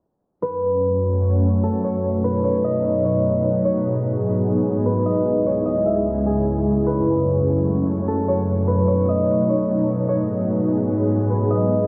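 Bathed in a huge ambient reverb and a low-pass filter, with a filter sweep running from 0.4 seconds through the end, this spacious, ethereal half-time hip hop excerpt drifts over a minor-leaning progression that begins on F#m and moves through B7, G#m7 and C#m. A ringing, fingerpicked concert harp carries the melody from 0.4 seconds, softened by its own low-pass filter and echoed by a digital delay. From 0.7 seconds an up-front, warbling, vintage pad of detuned sawtooth and triangle tones holds sustained chords through ensemble chorus, while from 1.2 seconds a very quiet, glassy harmonics texture with drifting overtones adds a calm shimmer beneath.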